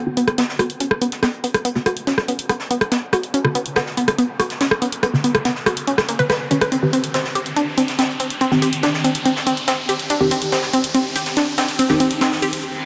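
Dark and relentless, this excerpt from a longer piece of driving peak-time techno is one long build-up in a straight four. An up-front analog pluck carries the riff, its round, bright tone built from sawtooth, square, triangle and a noise layer with a ring-modulated edge, treated with chorus, overdrive and digital delay. Beneath it, a muted, deep dub chord stab with detuned sawtooth and a decaying filter pluck moves from B5 to C5 at 6.7 seconds, colored by phaser, analog chorus and delay. Filter sweeps run across both the stab and the synth arpeggio for the whole passage. A punchy analog drum machine sits up front with hi-hat and rim click, while a natural-sounding jazz brush kit in a small room adds high-pass-filtered hats and a high-tuned snare. A riser climbs in the background from 2.0 seconds until a break at 12.6 seconds, where a reverse cymbal lands, all inside a dark production drenched in a huge ambient reverb.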